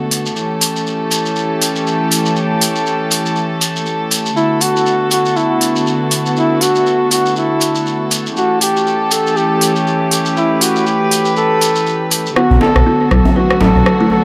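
A swung afro house groove carries this earthy, hypnotic passage cut from a longer piece: a layered deep house drum kit with smooth hi-hats, rim clicks and dub echo, a grainy shekere, and a barely audible downlifter and riser. A dark, reedy chamber string section holds gut-toned chords throughout, and from 4.4 s a veiled, bucket-muted jazz trumpet takes up front a melody with light vibrato and tape echo over the A7 and Bm7 harmony. At 12.4 s a build-up begins as a bright, buzzing, woody kalimba arpeggiates, joined by a mellow gliding sawtooth synth bass and a deep, distant djembe with metal rattles, all bathed in spring reverb and a heavily echoed mix.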